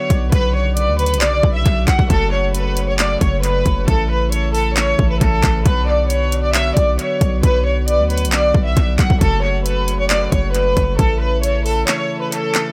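A bowed violin section with a gut-string, reedy tone and light vibrato carries an eerie melody from the start, softened by a low-pass filter and tape echo, over sustained chords from a chamber organ whose flute stops add a bright chiff. This is a menacing half-time trap piece in B minor at 135 BPM, moving through Bm, F#m and A, where a deep, boomy 808-style bass with a fast attack sits up front beside an overdriven electronic kit with hard-clipped kick, bright hi-hats and handclaps, all in an echo-heavy digital ambience. The kick drops out at 11.9 s, near the end of this short cut from a longer piece.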